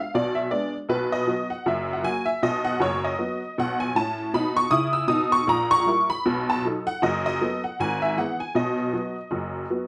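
Exuberant and swinging, this stride-piano jazz passage cut from a longer piece moves at 157 BPM in B major, with a lone detuned, jangly honky-tonk upright piano sitting up front in a moderate studio reverb as it rolls through diminished and seventh chords from F#1 up to E6.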